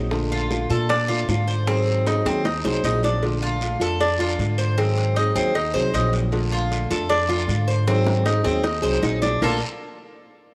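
Latin Cuban son with a guajira lilt, this short excerpt moves at 155 BPM in Bb major with a warm, relaxed mood, alternating between Bbmaj7 and Ab7. Up front, a bright, metallic tres picks arpeggios on its double strings, some octave-doubled, over a woody, thumpy upright bass with dark gut-string tone, while a fingerpicked flamenco guitar adds bright accompaniment with audible finger squeak. Tight, high-tuned bongos and cowbell played with soft hands sit in the background beside a raspy, band-limited guiro with a vintage feel, drum fills arrive at 2.1 and 7.9 seconds, and a moderate plate reverb gives the band a gentle halo.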